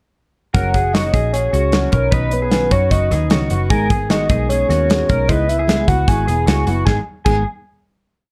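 A soft octave-layered synth lead with a round, triangle-like tone, chorus and slapback echo carries bittersweet, restless hook phrases over a full-bodied fingerpicked steel-string acoustic guitar, slightly broken-up arpeggios from an electric guitar through a small old amp with analog chorus, a foam-muted vintage electric bass with slides, and a modern studio drum kit driving a brisk backbeat in this jangly indie pop piece in G# minor at 152 BPM, which moves through a pre-chorus to a final chord at 6.9 seconds in a dark, lightly reverberant production.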